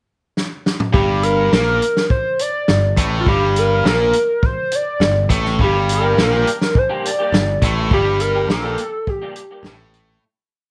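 A small room wraps this short, bittersweet and restless indie rock piece in G minor at 103 BPM, where a vintage drum kit with a punchy kick and rolled-off top plays a fill from 0.4 seconds into an up-front indie four groove. At 0.9 seconds a biting overdriven guitar octave riff arrives, doubled by a bright, growly picked bass driving eighth notes, while a hollow, woody square-wave lead carries hook phrases with vibrato, chorus and slapback echo. From 5.7 seconds a dark, lo-fi electric guitar through a small old amp adds short syncopated chords, and the piece fades out from 7.9 seconds to its end at 10.2 seconds.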